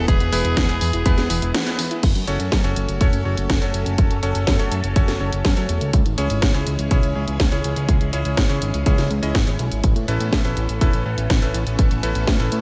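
Italo disco at 123 BPM in F# minor, nostalgic and melodramatic, cut from a longer piece. A raspy, gritty alto saxophone with light vibrato and delay carries the melody alongside soft, round chorused pluck arpeggios, until a band accent at 1.5 seconds opens a short break, and the pluck drops out at 2.0 seconds. From there the chords move from F#m through C#m to Aadd9 over a swirling, phased string machine, cutting stabs from a clangy vintage electric grand piano, a fat, saturated analog bass up front, and a tape-toned electronic kick and house kit with a cracking snare, hi-hat and crash, all set in digital ambience.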